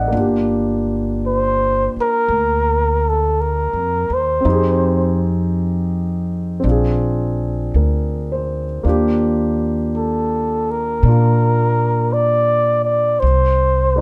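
A breathy flugelhorn carries the melody in this tender, late-night jazz ballad, entering at 1.3 seconds with a mellow, vibrato-tinged solo voice that sits close and up front, bathed in plate reverb. Beneath it, a grand piano with a warm tone and long sustain supplies the accompaniment from the very start, also placed forward in the mix. The upright bass anchors the low end with a woody, growly pizzicato sound from its steel strings, standing up front alongside the other two. The slow, swung feel moves through Gm7, Fm7 and Bb7 before settling on a lush Ebmaj9, then the chord changes fall away at 13.2 seconds. A light reverb gives the trio a soft sense of space in this brief passage cut from a longer performance.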